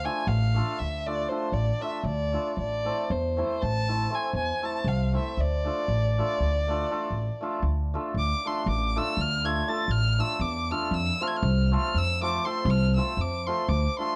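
A restless, virtuosic Balkan wedding-band tune in 11/8 and D minor at 237 BPM in eighths, cut from a longer piece, opens with a smooth, vibrato-rich bowed violin melody up front over shimmering, ringing hammered dulcimer accompaniment and a woody, growly pizzicato upright bass with tube saturation, all set in light reverb on worn, warbling old cassette tape with pitch drift, moving from D minor through A minor and back to D minor before closing on F major around 10.9 seconds.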